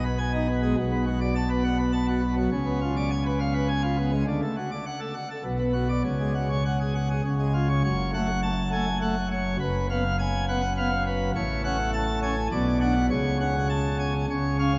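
Classical organ toccata in F# minor, this dramatic, stormy fragment is cut from a longer piece and moves at 102 BPM in a straight 3/4. A solo pipe organ on the full plenum carries the whole passage, ranging from F#1 up to A5, its mixtures giving a brilliant, baroque voicing with audible chiff and sitting up front in the sound. The harmony opens restlessly on G#m/B, pressing through Bm7 and a tense C#7b9 before a suspended C# settles onto F# minor at 7.8 s. From there the second half broods through Fdim/F# and F#m/A, closing on F#m/C# as the fragment breaks off at 14.8 s. A cavernous cathedral reverb with a 4.1-second decay surrounds the organ, while vinyl crackle and a top end that stops at 8.0 kHz lend the recording an aged, dusty character.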